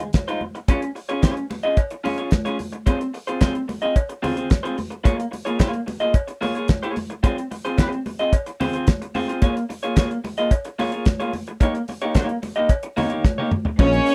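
A straight 4/4 disco groove at 110 BPM in Bb dorian drives this glamorous fragment, with a damped 70s drum kit up front, fat snare and tight kick, joined by ringing high-tuned congas and a metallic cowbell in the background under a slightly broken-up, lo-fi electric guitar moving through Ab6, Bbm7 and Eb7, until a drum fill at 13.2 seconds brings in a clear bowed string section, mellow French horns and a growly, envelope-filtered slap bass at 13.8 seconds just as the recording cuts off.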